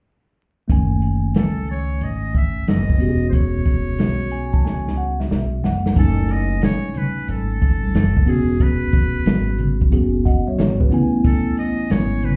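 A buzzy, breathy trumpet with a metal mute carries the melody from 1.4 seconds in this mellow, smoky jazz-hop piece. It floats over a worn, slightly out-of-tune tine electric piano that accompanies and adds a fill before the second section. A woody, growly upright bass and an up-front jazz drum kit with a boomy kick and vintage 12-bit sampler grit hold down the swung groove, with a drum fill leading into 6.0 seconds, when bright, hard-handed maracas and congas join in the background, and the mix sounds muffled through a wall, with club reverb and vinyl crackle.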